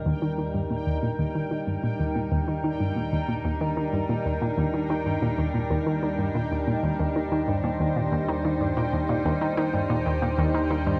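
Luminous and cosmic, this sequencer-driven space music excerpt sets a round, nasal analog pluck riff up front over a morphing, detuned wavetable pad holding a sustained Ebmaj7 chord with chorus and built-in reverb. A fat analog bass fades in from the background throughout the 11 seconds, while a bubbling, resonant texture of random filter steps fades in high above. Everything sits in a vast, echoing cathedral reverb, and tape echo trails the pluck.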